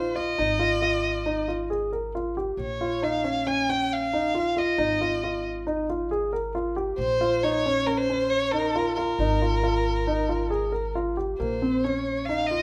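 A moderate recital-hall reverb surrounds this pensive, urgent contemporary chamber piece, cut from a longer work and moving at 136 BPM in an uneven 5/4 in Bb dorian, where a dark, expressive bowed violin with vibrato and portamento carries the melody up front over the mellow, worn arpeggios of an intimate grand piano with audible action noise, while a woody, thumpy pizzicato upright bass on gut strings sits lower in the mix, the three parts sounding together from 0.0 to 12.6 s.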